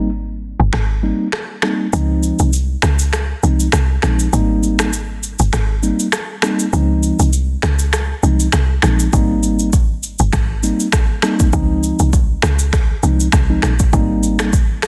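A lightly swung sixteenth-note groove in 4/4 drives this breezy, romantic afrobeats excerpt. A woody, punchy log drum bass with a noisy edge sits up front from the start beside a mellow tine electric piano that alternates Abmaj7 and Dbmaj7 chords, and the electronic drum kit joins at 0.7 s with a deep kick, finger snaps, rim clicks, shaker and a softly clipped snare. The mix is dry, dense and heavily limited, and the drums carry a tape-saturated, small-room character.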